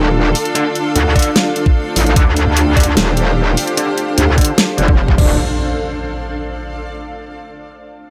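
Opening on a metallic, distorted wobble bass up front beneath a lush supersaw pad and a cloudy, evolving granular pad that both pump with the sidechain, this heavy, aggressive half-time dubstep excerpt brings in a tape-warm electronic drum kit with a huge snare and bright hats, filter-swept fuzz guitar stabs with tape echo in the background, and a knocking kick at 1.2 s, before an electronic impact lands at 5.2 s and the blurred granular pad lingers with it until 7.0 s in light digital ambience.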